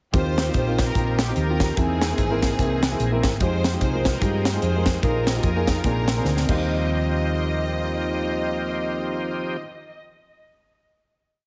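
Uptempo gospel in a swung 4/4, uplifting and reverent, where a lush bowed string section with tape echo carries a motif-based melody over a woody upright piano with audible action noise, a shouting, lightly overdriven tonewheel organ holding chords through slow rotary speaker and chorus vibrato, and a round, dark hollow-body electric bass walking and running with chromatic approach notes. A punchy, high-tuned fusion kit drives a two-beat praise groove up front until a drum fill at 6.3 seconds ends the breakdown, and the piece closes on a final hit from 6.7 seconds that the strings, piano, organ and bass play through. The heavily compressed, radio-like sound sits in light reverb.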